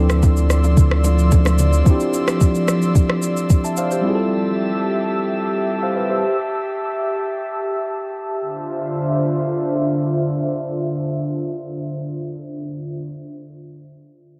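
An airy, breathy pad with chorus and sidechain pumping sustains Dm9 and Fmaj9 chords across the full 13.0 seconds of this hypnotic, late-night amapiano excerpt in D minor at 110 BPM, opening over a bright, clean tine electric piano, a deep, punchy sine sub bass, a soft, tape-warm electronic drum kit of kick, rim click and shaker, and very quiet bongos and congas in a small room, each of which drops away early, while a filter sweep runs through the first 8.4 seconds amid digital ambience and lossy compression artefacts.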